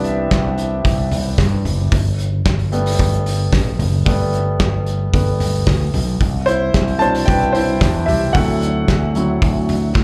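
An upright piano carries this piano-driven pop passage, taking a solo through its full 10 seconds with a woody, intimate tone, audible action noise, long sustain and a touch of slapback echo. Underneath, a fretless electric bass sits up front with a warm, direct-and-amped sound, while a loose indie drum kit plays hi-hat, kick, snare and toms with a tight kick, a medium-tuned snare, a pumping room character and a rolled-off top. The mood is earnest and driving, moving at 112 BPM in a straight 4/4 over the chords Cmaj7, Gadd9, Cmaj7 and D7. The sound is fairly dry overall, yet it comes across like a live gig heard through a venue's PA, with a hint of club reverb. The passage is cut from a longer piece.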